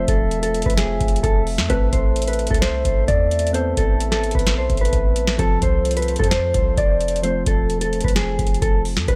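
A booming analog drum machine sits up front in this brooding, eerie trap excerpt at 130 BPM in a half-time feel, its deep kick, crisp snare and metallic hi-hats entering at 0.1 seconds beneath a dark, clean, fingered electric guitar melody that is compressed and low-pass filtered. A boomy, sine-based 808-style bass with a fast attack and decaying tone anchors the harmony as it moves from F to Amadd9 at 1.7 seconds and back to F at 5.4 seconds. Round, gentle electric-piano-like synth keys with chorus add soft accompaniment, while a mellow French horn section holds classical-style chords in the background, all in a dry sound.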